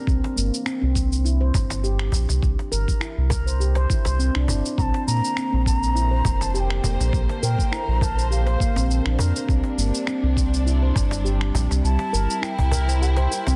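Warm and earthy, this short organic downtempo excerpt moves at 102 BPM in C mixolydian with a lightly swung sixteenth feel, built on a round, deep analog bass that pumps against the beat, a gritty, overdriven electronic kick with overdriven shaker and finger snaps, a woody cajon played with soft hands, ringing handpan arpeggios trailed by delay, and a barely audible quartz singing bowl. At 4.8 seconds, as the harmony shifts from C to Bb, an airy bamboo bansuri melody with tape echo enters together with a lush, bowed studio string section that also pumps. The kick drops out at 11.8 seconds, leaving the rest in a light reverb and a dense, heavily limited modern master.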